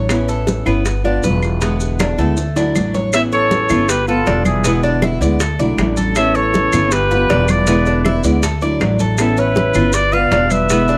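Latin Cuban son with a guajira lilt, this sunny, danceable excerpt moves at 158 BPM in A major, with a woody, thumpy upright bass up front, a full-bodied fingerpicked nylon-string guitar with audible finger squeak, and a metallic, double-strung Cuban tres weaving arpeggios over a cycling Aadd9–G7–E7–Dadd9 progression. Grainy maracas play alongside congas with thick skins and hard hands, tight high-tuned bongos and woody claves, those last three sitting in the background, and a drum fill from 2.0 to 3.1 seconds leads into the next section. At 3.1 seconds an intimate, breathy trumpet takes the vintage, whispered lead with vibrato and a soft attack, joined by a pure, straight-toned concert flute on a second line, all captured as a dry, close small-room studio recording with a 1970s feel.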